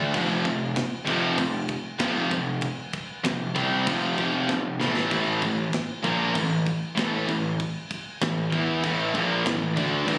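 A relentless, heavy metal riff opens at once in A minor at 97 BPM, built from three guitars, a biting overdriven one that is double-tracked, a heavy high-gain one and a scooped high-gain one, all set in the background beneath a growly, punchy fuzz bass that sits up front. A tight metal drum kit with a tight kick, medium-tuned snare and crash cymbal joins at 0.1 seconds, plays a fill from 4.5 to 5.1 seconds, and the harmony moves from F5 to A5 at 5.1 seconds. The short cut has the sound of a small club room captured on a phone, with compression pressing the band together.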